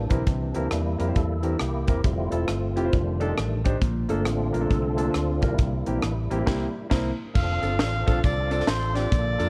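A swung 4/4 groove at 135 BPM drives this short cut from an uptempo gospel piece in F major, reverent yet hopeful in mood. A fat, lightly overdriven tonewheel organ carries sustained chords through a slow rotary speaker with chorus vibrato and audible key click, and it takes the spotlight as the featured solo voice for the first 7.4 seconds, moving from C7 through Fmaj7 and Bbmaj7. Beneath it, a round, growly fingered electric bass anchors the low end while an intimate concert grand piano, its action noise audible, fills in accompaniment, and a crisp, polished fusion kit with a high-tuned snare, punchy kick, hi-hat, rim click and crash sits up front in an airy studio room. The band hits an accent just before 7.4 seconds, when a gritty amplified harmonica enters up front with scooped notes, tongue slaps and light vibrato, joined by a very quiet, close and dry layer of tambourine, egg shaker and group handclaps over an F6 chord. 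Light reverb and a worn, warbling cassette-tape pitch drift give the whole recording an aged patina.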